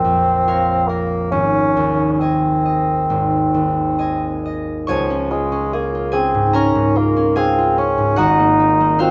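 In a gently rubato 4/4, this short classical romantic duo unfolds with a serene, tender mood, the bassoon carrying the melody with a soft attack and light vibrato, its warm, roomy voice set up front. The concert harp accompanies throughout, bright and ringing as it is fingerpicked across a broad range, while a moderate recital hall reverb lends the pair an intimate glow. Moving from B-flat minor toward A-flat, the harmony settles onto D-flat at 4.9 seconds and closes on a rich A-flat thirteenth chord at 8.2 seconds.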